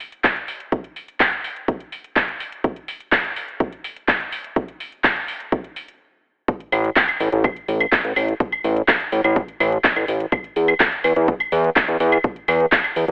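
A house drum kit of claves, handclaps and metallic hi-hats opens this cinematic, melancholic melodic techno excerpt at 125 BPM in straight 4/4, joined almost at once by a punchy electronic kick, both tape-warm, layered and up front in a small room. The build-up breaks off in a brief stop before the drop at 6.5 seconds, and a fat analog bass enters at 6.7 seconds, nasal and detuned with saturated sawtooth and square-wave tones and sidechain pumping. Light digital reverb and a telephone-like tone colour the recording.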